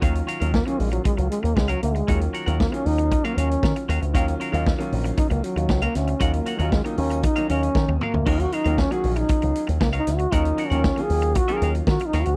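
A glamorous, danceable disco groove in straight 4/4 opens at 0.0 s with a vintage acoustic drum kit, a picked electric bass, a semi-hollow electric guitar and a bright grand piano all sounding together. At 0.5 s a breathy, close-miked trombone enters up front with a mellow, jazz-style solo and light vibrato that carries the melody through the rest of the passage. The bass is round and punchy, run through an envelope filter and sitting forward in the mix. Alongside it, the drum kit offers a tight kick, a medium-tuned snare and dark cymbals, with its top end rolled off, plus a drum fill around 7.8 s. Further back, the guitar adds clean, compressed, hollow-body accompaniment, and the piano contributes a brilliant, slightly worn tone. The dry, close sound recalls a 1970s studio session, and the passage is cut from a longer piece.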